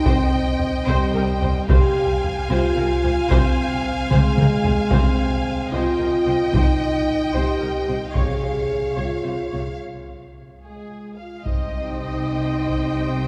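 Drenched in cavernous church reverb, this epic, relentless orchestral film cue in a straight 6/8 sets lush, vibrato-rich violins on melody and a second line over dark, distant French horn chords, expressive violas with portamento, a very quiet cello and a clear, focused double bass holding the low C, while heavy-sticked, vintage-sounding taiko drums pound throughout with a fill at 4.1 seconds, hard-mallet timpani strike briefly at 8.2 seconds in the background, and a break at 9.8 seconds precedes a new section at 11.5 seconds.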